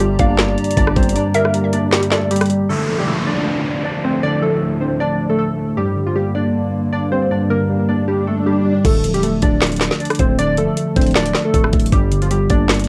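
Hiss-tinged and homemade, this short trap cut sounds as if it were dubbed to cassette in a small room, with a brief, moderate ambience around the parts. It is a brooding, hard-hitting hip hop groove in D minor at 156 BPM, felt in half-time, cycling between G minor and D minor. Glassy, detuned digital keys carry the melody up front, their wave-folded tone sweeping through a filter and trailing chorus, tape echo and plate reverb, while a worn, slightly out-of-tune tine electric piano supplies mellow, direct accompaniment underneath. A warbling, nostalgic pad holds lo-fi sustained chords in the background, and a hollow, bouncy square-wave pluck adds a second line only at the opening. The electronic drum kit punches forward with a knocking kick, woody snare, metallic hats, claps, rim clicks and crash, joined by a heavy, punchy sine 808 bass. The drums fall away at 2.7 seconds for a stretch of downlifter and swell effects over the keys and pad, then return with the 808 at 8.8 seconds.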